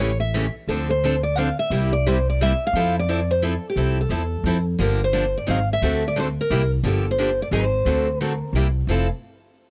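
Playful, lively jazz manouche at 175 BPM in a swung 3/4 and F major opens with two up-front, picked steel-string acoustic guitars, one carrying a warm melody and the other a bright accompaniment, alongside a woody pizzicato upright bass, all captured in a dry, close 1970s-style studio sound as the short excerpt moves from its opening section into a second one at 4.8 seconds, with chromatic chords colouring the return toward Fmaj7.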